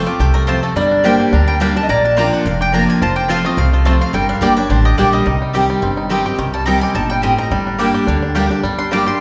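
Haunting and lonesome, this brief cut from a longer bluegrass piece races along at 213 BPM in G minor, its eighth notes lightly swung. A bright, woody mandolin carries the lead as a solo throughout, joined by a twangy, percussive banjo played with fingerpicks on the melody. A second mandolin, rounder in tone, adds chordal stabs from 0.5 seconds, while a metallic, nasal lap resonator guitar with slide offers a second line until about 5.1 seconds. Underneath, a full-bodied dreadnought acoustic guitar with fresh strings sits up front in the accompaniment, and a thumpy pizzicato upright bass anchors the low end. The chords move through F, G minor, B-flat and C minor, and the whole band is bathed in the long, wet reverb of a church or concert hall.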